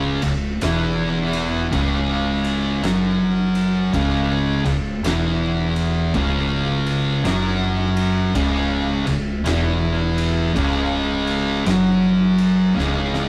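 A swung 54 BPM crawl in 4/4 drives this hypnotic, heavy stoner and doom metal excerpt in C# minor, where two thick, up-front fuzz guitars grind out a picked riff over a snappy FM bass with a metallic attack and overdrive, while an oversized, low-tuned acoustic kit with a boomy kick, fat snare and dark ride cymbal enters at 0.2 seconds and plays a fill at 12.8 seconds, the whole take carrying a rough rehearsal-room character with saturation and a small room reverb.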